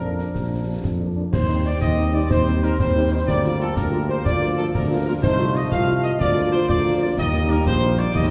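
A festive, spirited military-style march for wind band in 6/8, with a punchy, tightly played trumpet section carrying the melody while a euphonium and, from 1.3 s, a pure, very quiet flute ensemble add second lines. A mellow French horn section plays accompaniment and a warm, distant trombone section holds sustained chords, a mellow tuba sits up front on the bass, and a close, dry concert snare drum, bass drum and dark-toned clash cymbals drive it along, all in a roomy scoring stage reverb heard from further back.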